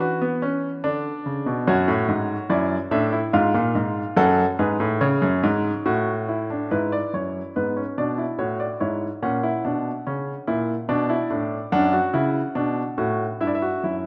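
Classical, baroque-style three-part fugue for solo grand piano, joyful and stately, moving at a steady 72 BPM in 3/4 across a range from F#2 to F#5. The piano sounds warm, polished and up front, set in a recital hall whose reverb lingers for about 1.8 seconds. Cut from a longer piece, the passage turns at 6.7 seconds from B minor and F# minor colours toward E7 and A, closing on Em/G.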